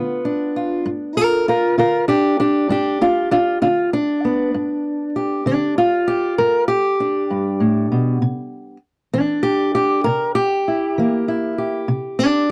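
A straight 12/8 pulse at 65 BPM sets a swaggering gait for this gritty acoustic country blues excerpt, carried entirely by a fingerpicked old ladder-braced acoustic guitar that sits up front and ranges from G2 to Bb4. Its dark, woody, boxy tone and old strings ring over a G7 chord before moving to C7 at 8.2 seconds. The sound is dry and close, in the manner of a 1970s studio, with just a light touch of reverb.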